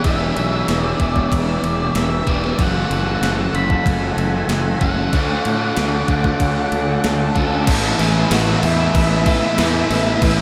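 Hazy and blissful, this short cut from a longer shoegaze and dream pop rock piece moves in a straight 4/4, drenched in a huge ambient reverb that leaves the whole mix dreamy and soaked. A growly, punchy fuzz bass sits up front, while a gated 80s digital drum machine with a thumpy kick and gated reverb snare carries the beat, its sampler-style kit re-recorded in a small room. A bright, biting overdriven guitar riff trails reverse reverb, joined by a crunchy overdriven riff bathed in lush chorus further back, and a very quiet, dark guitar at the edge of break-up traces fingered arpeggios. Behind them, a dark octave-fuzz lead guitar sings the melody through distortion and tape echo, and a thick, warbling sawtooth pad holds detuned unison chords with a slow attack and long release. The harmony moves from E7 through F#m7 and Dmaj7 before settling on Asus2 at 7.7 seconds, where a double-tracked, sludgy distorted guitar riff enters very quietly in the mix.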